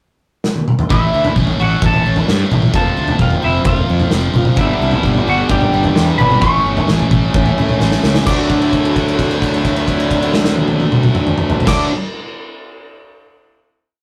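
Restless and bittersweet, this short, complete quiet-loud alternative rock piece moves at 130 BPM in a straight 4/4. A loose indie drum kit sits up front with a pumping room sound, dark cymbals, a tight kick and a toms groove, opening with a fill before the band enters at 0.9 seconds. A clean, twangy electric guitar with a phaser carries a motif-based melody in period phrases, partly doubled in octaves, over driving eighth-note fuzz bass that is round and overdriven. A high-gain distorted guitar plays ringing riff chords, a very quiet, boxy acoustic guitar picks swing-style arpeggios underneath, and a thick fuzz guitar joins at 4.6 seconds to fatten the pre-chorus as the chords move through A, F and G. After a second drum fill, the piece lands on a D chord at 8.3 seconds, with a note held almost to the end, all captured in a rough rehearsal-room recording with tube saturation.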